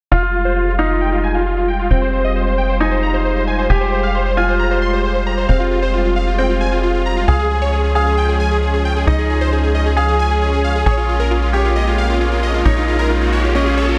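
This uplifting trance excerpt in F minor moves at 134 BPM in a straight 4/4, with a soaring, bittersweet mood, tuned to A4 = 444 Hz. Huge, detuned supersaw chords carry the melody up front between F4 and C6, shaped by a low-pass filter and tape echo. Beneath them, a polished baby grand piano plays a second line with its own tape echo, while a thick, bright unison pad holds sustained chords with a slow attack, chorus and a filter sweep running through the clip. A punchy, nasal sequencer bass drives the low end with a plucky, fast-decaying sawtooth and square tone, and a barely audible electronic hi-hat sits under everything. The harmony moves from Fmadd9 to Db at 7.3 seconds and Bbm7 at 10.9 seconds, and a background riser enters at 11.9 seconds, all set in light digital ambience with a dense, heavily limited modern master.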